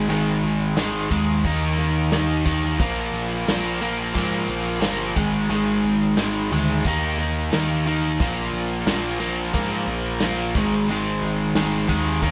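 An overdriven, double-tracked electric guitar opens at once with a riff set up front in the mix, joined by a growling picked electric bass, while a damped 70s drum kit comes in at 0.1 seconds. This is swaggering, sunny classic rock at 89 BPM in a straight 4/4, tuned slightly to A4 = 439 Hz. The compressed, dark-toned guitar riff rides a chord progression of Ab5, Eb5 and Bb5 across the section. Beneath it, the overdriven bass blends direct and amped sound into a round low end. The dry acoustic drums bring a tight kick, a medium-tuned snare, hi-hat and tambourine. Captured as a band playing live in one room, the excerpt sits in a moderate studio reverb.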